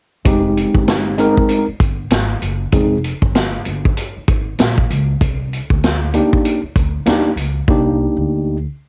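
A worn, slightly out-of-tune tine electric piano, lightly overdriven and tinted by cassette tape, opens this mellow, cool jazz-hop excerpt at 0.2 s and settles on an Fm9 chord at 0.3 s. It is joined by a woody, dark pizzicato upright bass and an up-front vintage drum kit with a punchy kick, medium-tuned snare, hi-hat and rolled-off top, swinging at 97 BPM in 4/4 through a move to Cm9 at 5.2 s and a drum fill at 7.7 s, within a lightly reverberant home recording on cassette.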